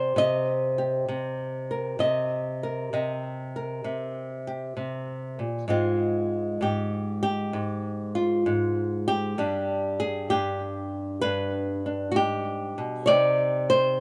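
Smoky and moody, this short excerpt from a longer piece is a solo jazz performance carried entirely by a single flamenco guitar. The acoustic guitar sits up front with a warm, fingerpicked tone, and the faint squeak of fingers on strings gives the playing an intimate, close-up character. It moves through a dark progression of Cm7, Abmaj7 and G before settling on C minor at 13.1 seconds, with a relaxed swing to the eighth notes. The guitar ranges from G2 up to Eb5, blending flamenco colour with jazz harmony. Recorded outdoors with little reverb, the sound is dry and direct, leaving the instrument's natural voice exposed across the full 14.0 seconds.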